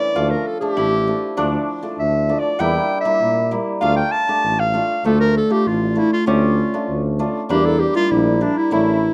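Soulful yet festive, this short klezmer passage, cut from a longer piece, moves at a straight 98 BPM in 2/4, in D harmonic minor, with tuning set slightly low at A4 = 438 Hz. A warm, present clarinet carries the melody up front in a classical style, taking a solo through the opening section. Beneath it, a fingerpicked acoustic Celtic harp plays a ringing second line while a hammered dulcimer adds shimmering accompaniment. A mellow tuba enters at 0.2 seconds as the bass, played with light vibrato and in a classical style, sitting prominently up front. The harmony alternates between D minor and E diminished, and a new section begins at 5.0 seconds, all framed in light reverb.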